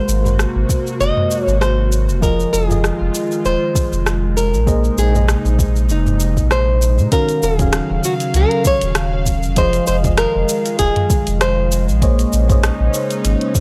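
A relaxed 4/4 groove with a light sixteenth-note swing underpins this wistful sunset chillout piece, cut from a longer work. A soft, tape-warm electronic kick enters at 0.7 seconds beneath a smooth R&B kit of hi-hat, rim click, shaker and toms set in studio reverb, while a deep, round sine sub bass sits up front. A fingerpicked flamenco guitar carries the melody with a boxy acoustic tone, audible finger squeaks and tape echo, and stops at 11.9 seconds. Behind it, a mellow, dark FM electric piano with chorus and tape echo plays the accompaniment, and a breathy, warbling pad with a slow attack and long release holds sustained chords through its own chorus. The chords move from Ab9 through Fm7 and Bb9sus4 to Ebm9, back to Fm7 and on to Bbm11, and the overall sound is dry and gritty, colored by hardware transformer saturation.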